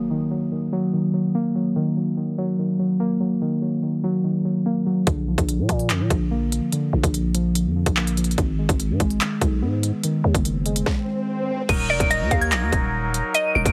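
The sound is dry, heavily compressed and radio-like, with little reverb, in this cold, tense drill cut from a longer piece with a half-time feel. It opens on muted, felt-like synth keys, dark, soft and intimate with a chorus sheen, moving through minor and major chords, with an electronic impact marking the start. At 5.1 seconds a growling, buzzy 808-style bass and an up-front electronic drill kit arrive together, the kit bringing a hard-clipped kick, sharp snare, crisp hi-hats, handclaps and crash cymbal with a tape-warm edge. An electronic swell rises from 10.7 seconds as the beat stops briefly. At 11.7 seconds the keys fall away and a glassy, crystalline FM synth bell takes the high melody, warbling with chorus, tremolo and tape echo, over sustained pipe organ chords voiced on a soft oboe reed stop with tremulant. A hollow, bouncy square-wave pluck with ring modulation and detuned chorus adds a second line just after.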